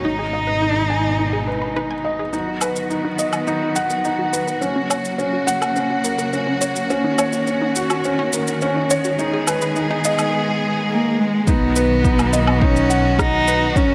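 A straight 4/4 pulse at 105 BPM drives this cinematic, melancholic piano and strings electronica, cut from a longer piece and built on Abm, B, Gb and Ebm7. A soft, felt-muted upright piano plays a riff throughout, intimate and up front with audible action noise and a delay trailing its notes, while a clear symphonic string section holds lush bowed chords with sidechain pumping. A dark, expressive solo cello carries the melody with vibrato and portamento, heard at the opening and again from 10.9 seconds, and a rich, reedy double bass section with a gut-string tone and pumping of its own anchors the low end at the start and in the closing stretch. A very quiet, bright unison pluck with a detuned sawtooth edge spins arpeggios until 10.0 seconds, as tape-warm electronic shaker, woodblock and rim click enter at 2.3 seconds during a build-up. The drop arrives at 11.5 seconds with a deep, layered electronic kick, all set in a moderate concert hall reverb.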